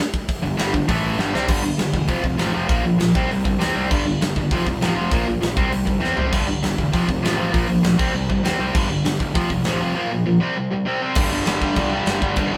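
A driving straight 4/4 punk rock pulse at 198 BPM kicks off this rebellious, rowdy cut from a longer piece, with a punchy, up-front big rock drum kit of crash, hi-hat, kick, snare and toms firing fills at 1.2 and 6.0 seconds, while a sludgy, double-tracked overdriven guitar riff cycles through G5, F, Bb5 and C and a growly fuzz-picked bass sits in the background, all played live in a stone room with a moderate one-second reverb.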